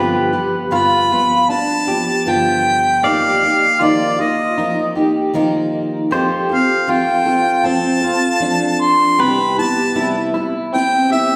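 This nostalgic, peaceful acoustic folk piece, cut from a longer performance, opens with a full-bodied jumbo steel-string guitar picked up front. From the first moment it is joined by an electric guitar through a small old amp, playing tremolo-treated arpeggios with a slightly broken-up, compressed tone, and by a clean, twangy pedal steel tucked in the background as a second line, its fingerpicked slide notes marked by volume swells. At 0.7 seconds a harmonica takes the melody, sitting up front yet sounding distant and roomy, with a light vibrato and a classical-style poise. Over a straight 4/4 pulse, the harmony moves from G7 to Ebadd9, then F and Cmaj7, while a wet recital hall reverb with a 1.7-second decay wraps the small band in the warm, spacious resonance of a church or concert hall.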